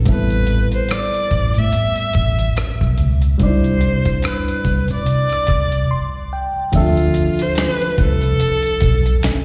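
R&B with a neo-soul lean, this late-night, soulful passage is cut from a longer piece and moves with a relaxed swing over chords drifting from Am9 to Cadd9 and on to Dm9. A dark, round, foam-muted vintage electric bass sits up front with a punchy, amped tone, while a dusty sampler-style drum kit adds a thumpy kick, a medium-tuned snare, rim clicks and hi-hat with a compressed, gritty, tape-warm character. Over this a bowed solo viola carries the melody, focused and smooth on top with gentle vibrato, colored by slapback and tape echo. A barky, reedy electric piano comps underneath, lightly overdriven through its built-in speakers with phaser and slapback echo, and it takes a fill from 5.5 seconds, as a break opens at 5.9 seconds before a new section arrives at 6.7 seconds. Very quiet, close maracas and finger snaps sprinkle the groove, and the whole band sounds like a live gig heard through a venue's PA, framed by small-room ambience and recital-hall reverb.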